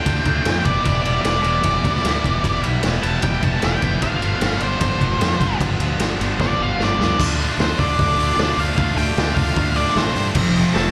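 Indie rock at 152 BPM in D dorian, moody and cool, caught live through a club PA with its reverb and cut from a longer piece. A dark octave-fuzz lead guitar solos over Dm, Em7 and G7sus4 until 7.2 seconds, dressed in plate reverb, slapback echo and digital delay. Beneath it, a crunchy overdriven guitar and a bright, scooped high-gain guitar pick riffs in the background, a round, punchy fuzz bass drives underneath, and an up-front garage kit with a boomy kick, gritty saturation and a rolled-off top ends that stretch with a fill, before a breathy, whispered trumpet slips in very quietly at 7.6 seconds as a second line, with light vibrato and scooped notes.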